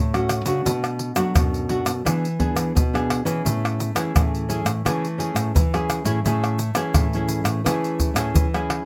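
Closely miked and detailed with light reverb, this playful, lively samba-choro excerpt in A major moves at 86 BPM in a straight 4/4. A thumb-plucked classical nylon-string guitar plays the accompaniment through Dmaj7, Bm7 and E7 before settling on Amaj7 at 3.5 seconds. A full-bodied, fingerpicked nylon-string guitar carries the bass line up front, while a dry, close percussion group of egg shaker, pandeiro, tamborim and tight surdo drives the groove.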